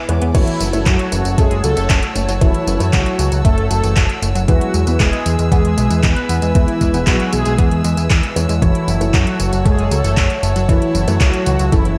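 A thumpy, overdriven electronic kick drives a straight 4/4 pulse alongside a metallic, tape-tinged house kit of hi-hat, handclaps, tambourine and crash cymbal, while an up-front, thick sawtooth bass underpins this nostalgic, danceable italo disco excerpt cut from a longer piece. A brassy, ring-modulated synth brass carries the melody from 0.3 seconds with chorus and tape echo, over nasal, detuned pluck arpeggios treated with phaser and delay. Close, softly bowed chamber strings hold sustained chords while dark piano stabs sit in the background as the harmony moves from F#m7 to E and back.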